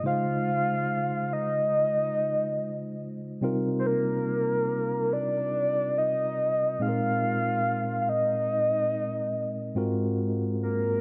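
A straight, unhurried 4/4 pulse carries this late-night, sensual R&B excerpt, which is cut from a longer piece. A mellow tine electric piano, clean and heard through its built-in speakers, sits up front from the start, laying down lush extended chords that move from Dbmaj9 to Cm11, then Bb7sus4 and Ab13. At 0.1 s a soft, octave-layered synth lead joins it for the melody, blending round triangle and sine tones with a sub octave, a gentle attack and long sustained notes touched by vibrato. Chorus, phaser and tape echo give that lead a full, shimmering depth as it stays close to the listener alongside the piano. A moderate scoring-stage reverb and a dark, warm production keep the whole sound soft and intimate through to 11.0 s.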